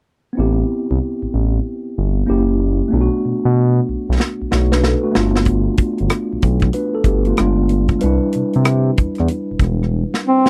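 A mellow tine electric piano opens this smooth, sultry neo-soul R&B excerpt in A minor at 94 BPM with a swung sixteenth feel, joined at once by a nasal, sawtooth-edged synth bass with vibrato and then at 4.2 seconds by a tight, up-front funk drum kit whose fills and rim clicks snap through a dry, close 1970s-style studio sound over chords like Am9, F#7b9 and Cmaj9, before a folk-style duduk slips in with a single vibrato note at 10.3 seconds.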